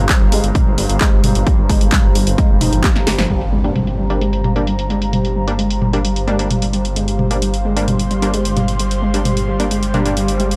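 An overdriven, heavy electronic kick sits up front in this dark, intense stretch of driving peak-time techno at 131 BPM in G minor, pounding until 2.9 s as a drum fill leads into a band accent and a background impact at 3.3 s. Beneath it a thick, menacing detuned saw bass pumps against the sidechain on low F and G, while a resonant drone with moving overtones hovers in the background only through the opening 3.3 s. A warbling, lo-fi pluck carries the riff through overdrive, ensemble chorus and analog delay, and a soft, breathy pad floats high above. The overdriven techno kit adds handclaps, hi-hat, a punchy snare and toms, its filtered drums sweeping from 3.3 s onward. From 3.6 s a punchy, evolving supersaw stab joins with its own filter sweep and delay, and a swell at 9.9 s closes this dry, gritty, hardware-toned fragment of a longer track.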